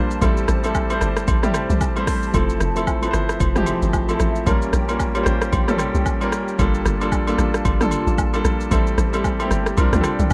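This amapiano excerpt moves at a relaxed 113 BPM in 4/4, with a 16th-note swing that gives it an easy, unhurried lilt. A concert grand piano sits up front with an intimate, polished tone, its action noise audible beneath chords that move from Am7 through Fmaj7, Bbm6 and Gm9, back to Am7 and on to C9sus4. Behind it, a hollow, flute-like pad with a vintage warble holds sustained chords in the background, thickened by ensemble chorus and breathing with sidechain pumping. The tight log drum bass is percussive and punchy yet mellow, its fast attack decaying in the low register. From 0.1 seconds an electronic deep house kit sits up front with an overdriven, punchy kick, metallic hi-hats, rim clicks, shaker and toms. Agogo bells and woodblock enter at 0.2 seconds, close and dry, adding an acoustic sparkle to a rough, lightly reverberant home-demo sound.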